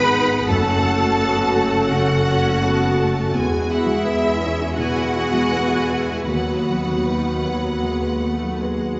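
Moving in a rubato 4/4, this sorrowful, longing film-score fragment sets a rich violin section's vibrato-laden melody beside a clear, lush second violin line, with a dark, mellow grand piano, its action noise faintly audible, and focused violas sitting in the background beside punchy French horns holding sustained chords, while smooth cellos and even double basses carry the bass, the ensemble steeped in a recital hall's reverberant glow as the harmony moves from F#m through Eadd9 to B/D#.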